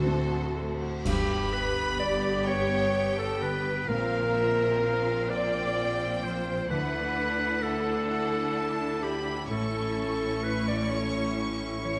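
Cut from a longer cinematic score, this hopeful, tender orchestral passage in a rubato 6/8 opens with a clear, close violin melody over a distant second violin line, smooth violas, an intimate concert grand piano with audible action noise, a very quiet ringing harp, lush cellos and bright, intense double basses, before an up-front vintage clarinet joins the second line at 1.0 s and dark cymbals with concert bass drum mark an ensemble accent at 1.1 s, all in a moderate scoring-stage reverb.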